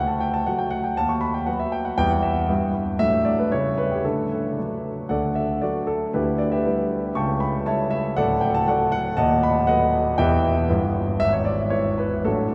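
A concert grand piano sits up front in a reverberant cathedral-like space, its natural, clear tone trailing into a long, wet decay that fills the hall. This is a classical-period sonatina in a straight duple metre, elegant and playful in mood, heard as a short passage cut from a longer piece. The solo piano plays from 0.0 to 12.5 s across a broad compass, with a deep bass anchoring the upper lines. The opening phrase is stated once, and then returns at 5.1 s. Its harmony moves through tidy tonic and dominant progressions with passing secondary chords, and the passage breaks off on an unresolved E/G# at 11.2 s.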